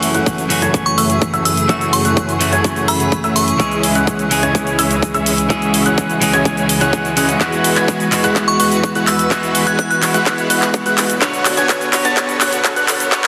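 A huge, euphoric supersaw lead carries the riff in this powerful, emotional festival progressive house excerpt at 126 BPM in F# minor, its detuned sawtooth tone pumping with the sidechain and running through a filter sweep and tape echo. Around it, a lush bowed string section holds sustained chords, a slightly broken-up electric guitar plays picked accompaniment with its own tape echo, and a worn grand piano sits in the background with high arpeggios under a filter sweep of its own. A crystalline FM synth bell, treated with chorus and 12-bit sampler grit, adds short melodic phrases, first at 0.9 seconds and again at 8.5 seconds. A punchy, overdriven electronic kick and an up-front big-room kit of handclaps, hi-hat and shaker drive the build-up, with a drum fill from 7.4 seconds and a very quiet riser near the end. The chords move from F#m7 through C#m and Eadd9 to Bmadd9, while a vast ambient reverb and a dense, heavily limited master give the passage its scale.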